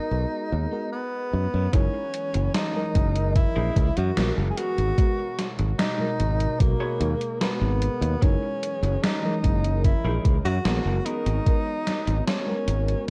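Vaporwave with a nostalgic, hazy mood, this excerpt from a longer piece moves at a slow 74 BPM in 4/4, in G# minor, with chords alternating between G#m9 and F#13. A breathy, intimate tenor saxophone carries the melody throughout, its dark subtone, vibrato and scooped notes close-miked and trailed by tape echo. Beneath it, an FM electric piano layered with a soft pad sits in the background with lush chorus, joined by a very quiet, warbling tape-like pad holding sustained chords with a slow attack and long release. A bright, growly fingered electric bass sits up front, and from 1.7 seconds a clean, compressed electric guitar picks out a riff under subtle chorus. At that same point a thumpy electronic kick and a gated 80s digital drum machine with hi-hat and gated reverb snare come in, all wrapped in a dark cassette-tape production with light reverb.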